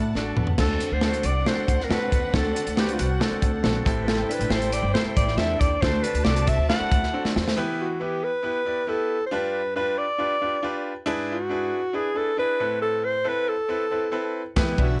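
A breathy, up-front alto saxophone carries the melody over lush bowed strings, a woody upright bass and a slightly broken-up guitar riff with spring reverb, and a gritty breakbeat drum kit kicks in with a fill at 0.2 seconds in this joyful, uptempo 1960s-style soul cut at 138 BPM. A brilliant baby grand piano with audible action noise accompanies throughout, while a mellow, bell-like glockenspiel adds a soft second line in the background. From 7.6 seconds the saxophone and piano carry on alone over chords moving from Em through G7 and E7/G#, until the drums and bass return at 14.6 seconds under a light reverb.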